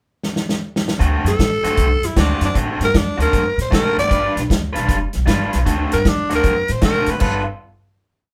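A small room with moderate reverb gives this swaggering, gritty electric blues shuffle at 154 BPM a live-band sound: a natural country drum kit opens with a fill at 0.2 seconds before its punchy kick and medium-tuned snare drive a double shuffle groove, an upright bass lays down a woody pizzicato boogie figure, an overdriven electric guitar picks bright, short syncopated chords, and a raspy, growling tenor saxophone up front carries a returning lick-based jazz theme with scooped notes and light vibrato over D7 and G7 changes until the band lands on a final G9 chord at 7.2 seconds.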